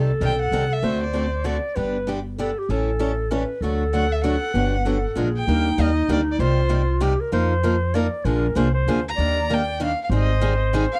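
Lively and swinging, this short cut from a longer acoustic string swing piece moves in a buoyant three-beat lilt with a jazz manouche flavour. The upright bass sits up front with a woody, thumpy gut-string pizzicato. The picked steel-string acoustic guitar is equally close, a boxy parlour sound with fresh strings and an audible finger squeak. A breathy clarinet plays a mellow, vintage second line in a soft-toned subtone with gentle vibrato. A warm bowed violin carries the melody in expressive phrases with portamento, returning at 3.9 s and again at 9.1 s, while the harmony shifts into a new section at 5.5 s. The sound is dry and intimate, with a close 1970s-style studio character and a small room ambience.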